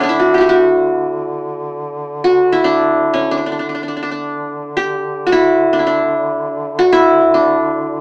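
A straight 9/8 metre drives this short Turkish passage, cut from a longer piece, with a passionate, warm mood throughout its 8 seconds. The qanun carries the melody from start to finish, its plectrum-plucked triple strings giving a bright-edged, acoustic tone that sits up front in the mix. Beneath it, a mellow duduk holds a steady drone on D3 in a folk style, its vibrato adding a gentle shimmer far behind the lead. The players sound as though they are performing live together in one room, surrounded by a wet studio ambience with a short reverb tail. The overall sound has a compact, small-speaker character that keeps the focus on the plucked melody over its sustained reed bed.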